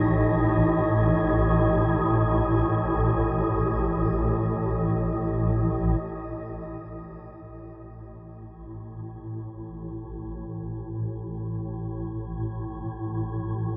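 This dark ambient drone in free time, cut from a longer piece, opens with three layers at once: a swarming, detuned drone up front, a breathy, wind-like tuned noise texture, and a bronze gamelan-type metallophone ringing arpeggios in the background, its shimmering beats trailed by diffuse delay and shimmer reverb. The metallophone stops at 4.8 seconds and the airy texture at 6.0, leaving the tense, granular drone alone as it fades in until the end at 13.8. A huge, wet reverb gives the space a cavernous depth.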